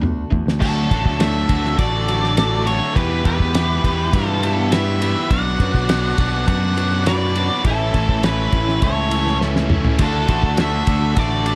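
A thuddy, cloth-damped drum fill opens this swaggering, gritty classic rock excerpt at 102 BPM, with a growling overdriven bass up front, a crunchy double-tracked guitar riff and a faint, shimmering fingerpicked twelve-string acoustic guitar underneath. At 0.6 seconds two dark, fuzzed lead guitars with slapback echo enter, one carrying the melody and a softer one a second line, while a very quiet, shouting tonewheel organ with slow rotary sustains chords over a D, Em, Bm, A progression. After another drum fill, a very quiet raw garage guitar riff joins at 10.0 seconds as the chords return to D, all in a small room with light reverb.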